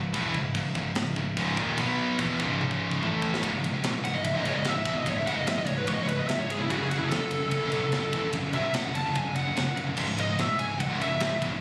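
A dark, high-gain lead guitar sits up front in this heavy metal excerpt, entering at 4.0 seconds to carry the solo melody over a relentless, dark backdrop in C# minor. At 146 BPM in straight 4/4, the piece opens in half time, and a drum fill beginning at 2.6 seconds sets up the solo section at 3.4 seconds. Beneath the lead, three picked, distorted rhythm guitars play the riff together: a tight, bright one; a scooped high-gain one set in the background; and a very quiet, double-tracked fuzz guitar. A warm, direct picked electric bass holds the low end. The tight acoustic drum kit has a high-tuned snare, a tight kick, and a mid-forward, rolled-off top, with crash and ride cymbals and toms. The chords move from C#m through B5, A5 and F#5. The sound has a phone-in-the-room quality, with small room ambience and light reverb.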